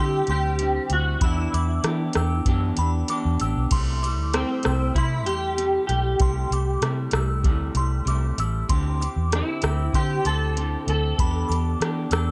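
Indie and bedroom pop with a sunny, hazy mood, cut from a longer piece, moving over chords like D9sus4, Em7 and C6 in a dark, lightly reverberant production. A bright, twangy guitar through a small old amp carries the melody with ensemble chorus, while a second slightly broken-up guitar with subtle chorus and a warbly pitch drift plays lo-fi accompaniment up front, and a crystalline FM synth bell adds a high second line through analog chorus and tape echo. A round, foam-muted fingered electric bass and a soft vintage rhythm box sit up front, the rhythm box entering at 0.3 seconds with a deep kick, metallic hi-hats, rim clicks and crash cymbal.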